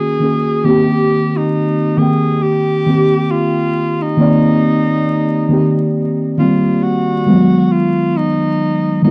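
Melancholic and reflective, this 9.1-second excerpt of swung 68 BPM hip hop in C minor, tuned slightly flat to A4 = 436 Hz, pairs a breathy, subtoned tenor saxophone melody, with light vibrato and scooped, jazz-style notes, against dark, full-bodied, felt-like synth keys with a chorused, fast-attack, decaying tone moving through Ebm7, Cm7 and Abm7, both parts filtered and sitting up front, with a moderate studio reverb, a cassette-tape home-recording haze and vinyl crackle.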